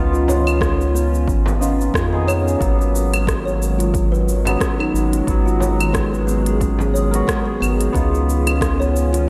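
Peaceful and earthy, this organic downtempo excerpt sways on a lightly swung groove. A round, deep analog bass sits up front and pumps under sidechain alongside a barky tine electric piano with chorus and delay, while a warbly, nostalgic pad with phaser hums in the background and a woody kalimba rings out arpeggios through gritty 12-bit sampling. An overdriven electronic kit with crisp hats, claves, rim clicks and shaker, a punchy kick entering at 0.6 seconds, and a very quiet frame drum that stops at 6.9 seconds drift over Db9 and Abm7 chords in a dreamy mix soaked in hall reverb.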